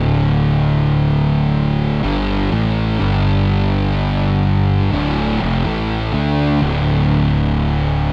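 A pair of thick fuzz guitars dominates this ominous, hypnotic metal fragment, both picked, distorted and placed up front as they play a riff spanning D2 to D4. Beneath them, a fingered electric bass with growly overdrive holds the low end from D1 to D2, its amped tone sitting up front as well. The music moves at a slow 62 BPM in straight 4/4, tuned slightly low to A4 = 438 Hz, with the harmony shifting from D5 to G5 at 3.0 seconds and settling on Dm at 4.9 seconds. The production is dark, with a light reverb around the heavy, saturated sound. Cut from a longer piece, the passage runs 8.1 seconds, with every part playing throughout.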